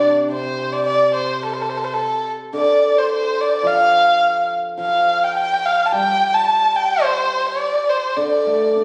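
Captured on a phone in a recital hall with a moderate 1.5-second reverb, this brief cut from a longer Chinese traditional chamber piece moves gracefully and tenderly at a rubato 106 BPM in 2/4 in the D yu mode, as a single close, up-front erhu sings the dark, woody melody with vibrato and portamento throughout its 8.8 seconds while a hammered dulcimer rings and shimmers softly beneath it in the low register.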